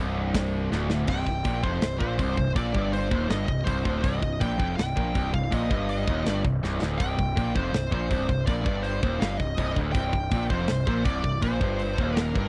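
Aggressive and relentless, this heavy metal cut in C minor charges ahead at 162 BPM in a straight 4/4. An overdriven electric guitar and a tighter, distorted rhythm guitar set further back grind out a low riff together, while a very quiet, double-tracked high-gain guitar joins them only until 1.1 seconds. A punchy, fuzz-soaked picked bass sits up front with the riff, and a tight metal drum kit, with bright cymbals, a medium-tuned snare and a tight kick, drives hard beside it, throwing in fills at 0.7 and 6.6 seconds. Once the harmony settles on C minor at 1.1 seconds, a bright high-gain lead guitar enters with a high melody coloured by slapback echo. The sound is dry and close, like a 1970s studio session, and this fragment is cut from a longer piece.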